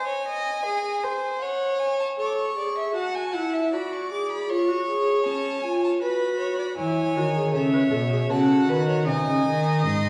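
A classical, baroque-style fugue for string quartet in a triple metre, this serious and driving fragment opens with two bowed violins playing together. The upper violin carries the melody high in its range while the second weaves a lower line, both smooth and even with vibrato. At 2.2 seconds a focused viola enters with accompaniment in its middle register, thickening the minor-key harmony as the music moves into its second section. The cello arrives last at 6.8 seconds, grounding the texture with a warm, expressive bass line marked by soft attacks and portamento. A wet recital hall reverb surrounds the quartet, which sounds as though heard from further back in the room, and the passage is cut from a longer piece.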